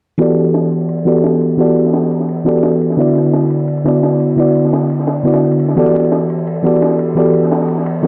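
A mellow FM electric piano sits up front with a soft, round tone and a noise layer, its chorus, delay and low-pass filter shaping chords that move from Em11 to D69 at 3.0 s and back to Em11 at 5.8 s. Beneath it, a crunchy acoustic breakbeat kit of hi-hat, ride and high-tuned snare plays well lower in the mix, its dark cymbals and rolled-off top giving a smooth, small-room feel. This uplifting liquid drum and bass passage at 172 BPM in straight 4/4 is cut from a longer piece, bathed in a lush hall reverb and carried by a filter sweep that runs throughout.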